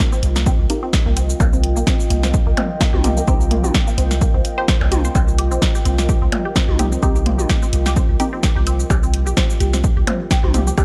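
A squelchy, resonant blip pluck opens this quirky, sparse minimal techno piece in C minor at 128 BPM with a 16th-note swing, its riff colored by phaser, cassette tape, digital delay and sidechain pumping, while a deep, moody ambient pad with chorus and reverb arrives almost at once. An analog drum machine adds cabasa, hi-hat and a punchy snare re-recorded in a large room, a sine sub bass with a pitch-drop attack pumps underneath, and a layered, tape-warm electronic kick enters at 0.5 s. A muted, mellow dub chord stab with phaser and delay follows at 0.7 s, and overdriven electronic percussion blips and toms join at 1.4 s, all within a dark production lightly touched by digital ambience.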